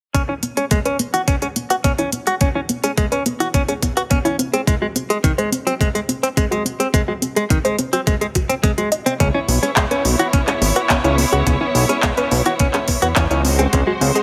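Set in a light reverb with small-room ambience, this sensual, groovy nu-disco excerpt opens with a soft, round synth pluck playing arpeggios under a filter sweep with chorus, delay and sidechain pumping, a clean, picked electric guitar riff up front with 12-bit sampler grit and dub echo, a thumpy electronic kick, and a layered pop kit of handclaps and crisp hi-hats, before lush, distant bowed strings with sidechain pumping and a fat, tube-saturated analog bass enter at 9.2 s over C#m7 and G#7 chords.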